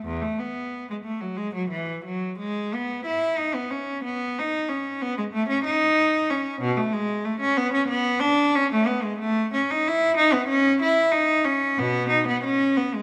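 A lone bowed cello carries this serene, radiant excerpt from a baroque-style suite movement, its rich, reedy gut-string tone and period-style playing sitting up front. Moving with a rubato feel around 92 BPM in 4/4, the single player ranges from E2 to E4 across the 13 seconds, tuned slightly below modern pitch at A4 = 439 Hz. A wet scoring-stage reverb with a 1.6-second decay surrounds the instrument with a spacious glow.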